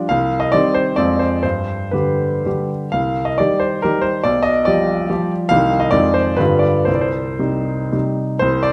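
Dotted rhythms drive this brief romantic triple-time dance, its rubato lending a nostalgic yet capricious air as the harmony turns through minor chords and dominant sevenths before settling home near 6.9 seconds. A solo baby grand piano plays throughout, spanning B1 to F5, with a clear, intimate, up-front tone and the action noise of the instrument audible close by. A reverberant recital hall surrounds the playing in this short excerpt cut from a longer piece.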